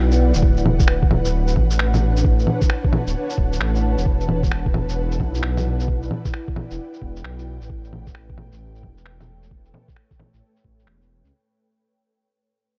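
A deep, rumbling detuned saw bass sits up front with saturated, beating weight, while a muffled, thumpy kick drum punches alongside it in this rainy, nocturnal future garage piece with a swung 4/4 feel. An ethereal, airy pad drifts through slow-attack chords from Bm7/D to Em7 to A7, softened by ensemble chorus, tremolo, reverb, gritty vintage sampler character and sidechain pumping, a pumping the bass shares. Pitched-down, tape-toned shaker, bongos and finger snaps tick beneath a low-pass filter inside a digital ambience, and the whole fragment fades out across its 11.3 seconds.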